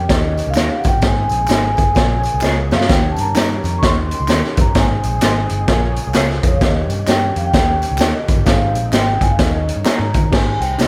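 Uptempo 1960s-style soul at 129 BPM in Eb mixolydian, joyful and danceable, with a swung eighth-note feel. A ringing, vintage vibraphone played with soft mallets and a slow motor vibrato carries the melody over a round, punchy, foam-muted picked bass and a gritty, saturated garage drum kit up front with a boomy kick, which plays a fill at 2.4 seconds. Tucked behind are a worn, woody upright piano with audible action noise, twangy guitar stabs through a small old amp with harmonic tremolo from 0.6 seconds, a very quiet reedy tonewheel organ with key click and fast rotary speaker that holds chords until 10.3 seconds, and close, dry tambourine and group handclaps, all in a light reverb.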